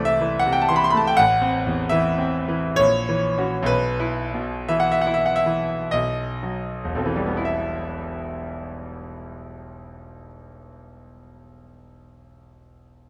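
A bright concert grand piano opens this short cut from a longer romantic nocturne, playing alone in E minor with a yearning, melancholic mood. The music moves in 3/4 with a free rubato feel, its tempo ranging from 36 to 83 BPM, and it slows down through its first 7.5 seconds. The harmony passes from A minor through an F#7 chord with A# in the bass and a B7b9 before settling on E minor at 7.5 seconds, where a new section begins. The piano spans E1 to C6, so a deep bass sits under a brilliant upper register. Close, detailed microphones keep the instrument natural and up front, while a moderate recital hall reverb with an RT60 of 1.7 seconds adds a sense of space around it.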